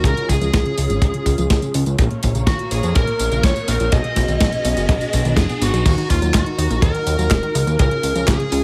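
Melodramatic and danceable, this short italo disco excerpt sets a picked, overdriven electric lead guitar with delay over a fat, detuned analog bass and a tight, up-front acoustic kick, while an overdriven, sampler-style 12-bit drum machine adds snare, handclaps, hi-hat, tambourine and crash. Behind them, a lush vintage string machine with phaser and ensemble chorus and a warbling, lo-fi pluck playing arpeggios both carry filter sweeps through the first 5.9 seconds, as a background riser climbs from 1.7 seconds. The chords move from Db through Bbm and B6 to Ebm as a new section opens at 5.9 seconds, all in a light reverb.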